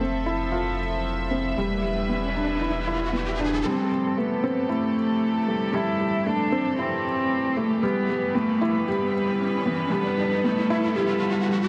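A dark, woody solo cello with vibrato takes up the melody at 3.7 s through a low-pass filter sweep as the build-up begins, over a soft, felt-muted upright piano riff with delay, reedy bowed string-section chords, a round sine sub bass that drops out at 3.6 s and an electronic riser in the background, in this melancholic, intimate piano-and-strings electronica fragment at 115 BPM in A minor, moving from Fmaj7 and Em7 to Am7 and Em inside a recital-hall reverb.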